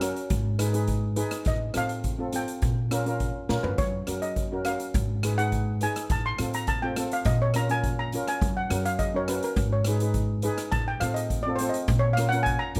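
Close, detailed microphones and light reverb give this festive, bouncy calypso excerpt a clear, present sound, cut from a longer piece and moving at 104 BPM in a straight 4/4. From the start, an accompanying steel pan sits up front with a metallic, shimmering tone struck with medium rubber sticks, while a woody, thumpy upright bass with steel strings plays pizzicato underneath. A street-band drum kit, also up front, brings a boomy kick, a medium-tuned snare, hi-hat, rim clicks and toms in an airy, polished big-room sound, with a drum fill at 3.5 seconds. At 1.5 seconds a lead steel pan enters with the melody, its mellow, dark and smooth voice played with soft rubber sticks and bathed in plate reverb, while a steel pan solo runs across the whole passage. Beneath it the harmony cycles through G#m, F/A, A#m and F#, keeping the groove buoyant and celebratory.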